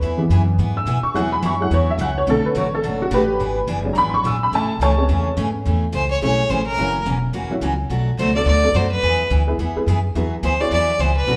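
A jangly, detuned honky-tonk upright piano takes the lead in this playful, cheerful swung country excerpt, soloing up front over bright, full-bodied picked steel-string acoustic guitar and a thumpy, dark pizzicato upright bass. At 5.9 seconds a single clear, earthy bowed fiddle with light vibrato enters up front and carries the solo to the close at 11.4 seconds. The band plays live together in one room, wrapped in a wet, large studio reverb.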